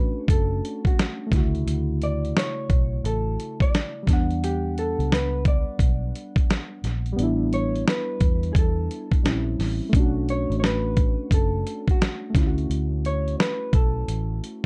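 A gritty, compressed sampler-style drum kit sits up front with a thumpy kick, medium-tuned snare and hi-hat, all carrying a 12-bit sampler grit and a small-room character, while a round, foam-muted electric bass sits just as close beneath it. Soft, detuned felt-like synth keys with chorus and a filter sweep supply the chords, moving from Bm9 through Dmaj9, Em9 and A9sus4, as a clean, dark hollow-body jazz guitar plays the melody. This melancholic, reflective lo-fi hip hop fragment swings gently, with a dark, warm production and little reverb.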